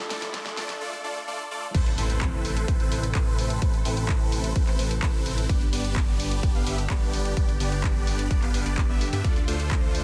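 A punchy, up-front electronic kick drives this euphoric, emotional slice of festival progressive house, joining at 0.3 seconds beneath huge, bright supersaw chords with a phaser and digital delay. A fat, wave-folded analog bass with tube saturation pumps with the sidechain alongside a pop kit of fat snare, handclaps and hats, while dark, woody bowed strings and a soft, felt-muted upright piano sit in the background. After a short build-up with a drum fill and a very quiet riser, the drop lands at 1.7 seconds on an Amadd9 chord with an impact, moving through G and Dm in a dense, heavily limited mix.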